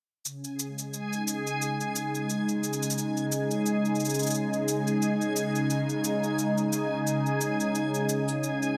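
Autumnal and delicate, this folktronica excerpt moves at 88 BPM in 4/4 with a light 16th-note swing, resting on a single C#sus2 chord. An up-front, smooth, detuned sawtooth analog pad with chorus and a moving notch holds sustained chords from 0.2 seconds, while an electronic shaker, overdriven and re-recorded in a small room, enters at 0.3 seconds. From 1.0 seconds a reversed, granular triangle texture with a bright, dreamy shimmer and its own built-in reverb floats above, all set in a moderate echo-chamber reverb.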